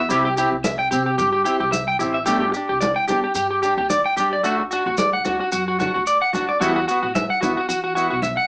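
Danceable and carefree, this short highlife guitar band cut in G major moves at 111 BPM with a lightly swung sixteenth-note feel. An up-front, twangy electric guitar at the edge of break-up spins picked arpeggios over a bright, clean second guitar's accompaniment, while a woody, thumpy pizzicato upright bass, ringing medium-tuned congas and grainy, close maracas fill out the groove through chords of C, G5, D and Esus2. The band plays live in one room with moderate studio ambience and a small speaker sound, the harmony shifting at 2.3 seconds.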